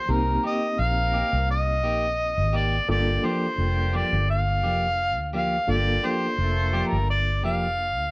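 A blues swing at 86 BPM in 4/4, this smoky, mournful G minor excerpt moves from Cm7 to Gm7 under a mellow, up-front harmonica melody with light vibrato, scooped notes and overdrive, while a reedy electric piano with fast tremolo holds the accompaniment throughout. A dark, round, foam-muted fingered electric bass sits punchy and up front, a clean picked electric guitar adds stabs from 0.4 seconds, and a clear horn section with octave doubling sustains chords in the background until 7.1 seconds, all inside a light reverb.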